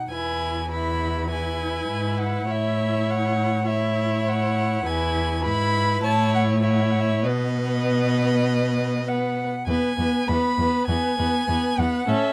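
This quick classical-period movement for string quartet is lively and spirited, moving at 100 BPM in a straight 4/4 in E major. It is cut from a longer piece, and all four bowed players enter together at the start and play through to about 12.3 seconds. The first violin carries the melody high in its range with a warm, expressive tone, soft attacks, vibrato and touches of portamento, while the second violin sings a smooth-topped second line beneath it. The viola fills in the accompaniment with a clear voice, and an up-front cello with a rich sound anchors the bass. The harmony moves from E to A and back, returns to A, then reaches B before settling on E at 9.7 seconds. Close, detailed microphones and a dry room bring out each player's vibrato.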